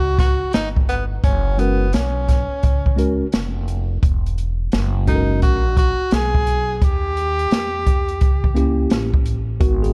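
A swung 4/4 groove at 86 BPM, with a 65% swing on the sixteenths, sets up this smooth, cool jazz-hop excerpt from a longer hip hop piece, tuned to A4 = 442 Hz. The acoustic jazz kit enters at 0.2 seconds, up front and airy in a small room, with a boomy kick, a medium-tuned snare and hi-hat, while a pizzicato upright bass on steel strings sounds woody and growly close to the listener. At 1.6 seconds a tine electric piano adds worn, slightly out-of-tune chords that remain clean and direct, moving from Bsus2/F# to Eadd9 and then D#7b9. From the very beginning a breathy tenor saxophone carries the melody above the other parts in a clear, present jazz style, using subtone, vibrato and scooped notes until it stops at 8.9 seconds. The production is dark and warm, with little reverb.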